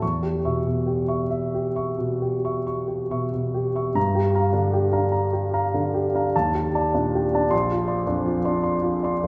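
This is an impressionist classical solo piano piece, nocturnal and mysterious in mood, taken from a longer work. A grand piano plays alone throughout at a slow, rubato pace of about 44 to 54 dotted-quarter beats per minute in 9/8. It spans a broad range from Bb1 up to C#6. The opening harmony rests on Em6, and at 4.0 s the music settles into G minor with Gm7, then moves through Ebmaj7#11 and on to Bbadd9. The piano's tone is warm, natural and intimate, with long sustain and audible action noise that keeps it close and present. A wet concert hall reverb surrounds it, placing the listener further back in the room.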